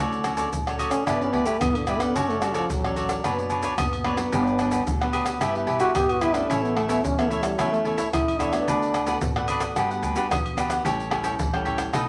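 A straight 4/4 samba and choro groove drives this joyful, playful excerpt, with a tight, dry percussion section of tube shaker, pandeiro, agogo bells, tamborim and surdo sitting up front from 0.1 s. Crisp picked cavaquinho and fingerpicked nylon-string guitar, its deep classical tone marked by finger squeak, fill out chords such as Dmaj7, G6 and Gmaj7 over a woody, steel-string pizzicato upright bass. From 0.9 s to 9.2 s a dark, raspy, breathy trombone takes a close-miked, growling jazz-style solo, all within a wet studio reverb.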